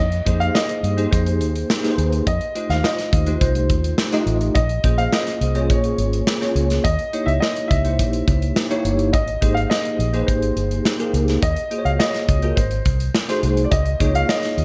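Nocturnal and urban, this polished 1980s jazz-funk pop excerpt moves at 105 BPM in a straight 4/4 in F minor, its chords drifting from Fm11 through Bbm7 and Abmaj9 before settling on Db69. A dark, round, foam-muted electric bass pairs with a punchy, mid-forward studio drum kit of kick, snare and hi-hat that sits up front, while from 0.3 seconds a bell-like tine electric piano with ensemble chorus adds bright, clean accompaniment. A natural grand piano carries the melody through an analog delay, and the dreamy mix is soaked in plate reverb.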